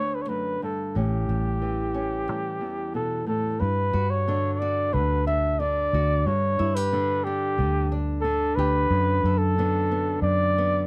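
A straight, unhurried 4/4 pulse carries this short fragment of an acoustic folk-pop ballad, cut from a longer piece, with an intimate and heartbroken mood. A mellow flugelhorn sings the melody up front in a solo, jazz-inflected style, its vibrato and smooth top giving the line a tender ache. Beneath it, a small, warm nylon-string guitar is fingerpicked as accompaniment, and a vintage foam-muted electric bass joins at 1.0 s with a dark, round, punchy tone that sits forward in the mix. The harmony moves from Bm7/D to A7, then shifts to G5 as a second section opens at 3.6 s, settling onto Bm7/F# near the close. Close, detailed microphones and a light reverb keep the sound personal and near.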